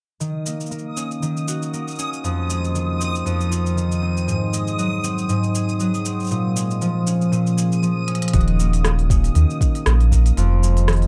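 Folktronica with an autumnal, intimate mood, built on fingerpicked concert harp arpeggios that ring up front through a low-pass filter sweep and digital delay, over a crisp organic electronic kit of cabasa, hi-hat and rim click with a gentle swing. A reversed, detuned granular texture drifts in high above from 0.9 to 8.3 seconds, dreamy and bright in its own reverb, as the chords move through Ebm7, Fm7, Ab7 and Bbm7. After a drum fill at 8.1 seconds, a round sine sub bass and a soft electronic kick arrive at 8.3 seconds, deepening the dark, lightly reverberant production.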